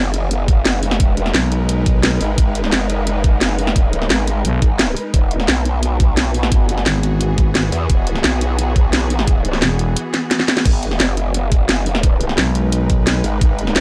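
Futuristic and aggressive, this excerpt of dark technical drum and bass pairs a saturated, wobbling growl bass, formant-filtered, chorused and pumping to the sidechain, with a thick FM growl bass that cuts in only in short bursts, most notably from 6.9 to 10.0 seconds. Underneath, a tense, detuned, granular drone sustains evolving chords that move from G# minor to E and back. A knocking electronic kick and a layered kit with a cracking snare, bright hats and crash sit up front in a dry, small-room sound, with a drum fill at 10.1 seconds.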